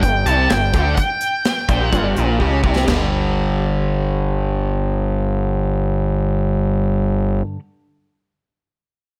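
Classic rock at 127 BPM in a driving, sunny straight 4/4, cut from a longer piece, with a dark octave-fuzz lead guitar up front stating a short melody between G5 and A5 through distortion and tape echo until 2.3 seconds, over a bright, picked crunchy overdriven guitar riff, an aggressive, saturated synth bass with a resonant sync-and-ring-modulated bite, and a big acoustic rock kit with punchy kick and bright china and hi-hat cymbals that ends its run with a fill at 2.4 seconds, while a clean lap steel slide line enters softly in the background at 1.7 seconds and continues through the second section in a small room ambience.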